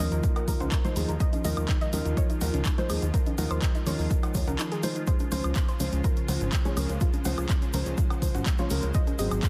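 A lush, phased supersaw pad under a filter sweep, a gentle chorused pluck playing delayed arpeggios, boxy felt-muted upright piano stabs with audible action noise, a fat detuned analog bass and a grainy tube shaker all open this dreamy, bittersweet progressive house passage at 124 BPM, with the pad, pluck, piano and bass pumping together over chords moving from Ebsus2 to Dbmaj7 at 5.1 seconds and Ab7 at 8.9 seconds. A house kit with bright overdriven hats, handclaps and woodblock enters at 0.1 seconds, followed by a punchy, up-front electronic kick at 0.2 seconds, while analog cowbell and congas sit in the background from 0.4 seconds. The mix carries light digital reverb and a small-room ambience on the drums, cowbell and congas, under a dense, heavily limited modern master.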